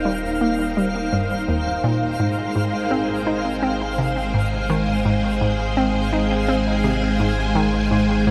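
Ambient, sequencer-driven space music in Ab major, this short excerpt moves at a steady 84 BPM in straight 4/4 with an expansive, luminous mood. A lush, vintage string machine sits up front with full-bodied sawtooth chords, thickened by a sub octave and an ensemble chorus, shifting from Eb to Abmaj7 at 2.2 seconds. Beneath it, a deep, round sine sub bass holds mellow low notes. A hollow, bouncy square-wave pluck enters at 0.1 seconds to carry the riff, its detuned tone and noise layer colored by chorus, phaser and tape echo. High above, a twinkling granular texture adds an FM shimmer an octave up, bathed in its own built-in reverb. The whole mix sits in a vast, echoing space with an eight-second reverb tail.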